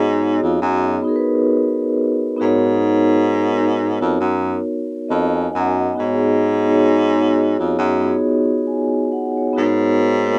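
Melancholic and nostalgic, this swung hip hop excerpt sets a mellow, ringing soft-mallet vibraphone, low-pass filtered and up front, moving from G#m11 to C#7sus4 and back, over a subtone baritone saxophone that carries the bass with vibrato in a distant, roomy jazz style, in light reverb and the rough sound of a home cassette demo.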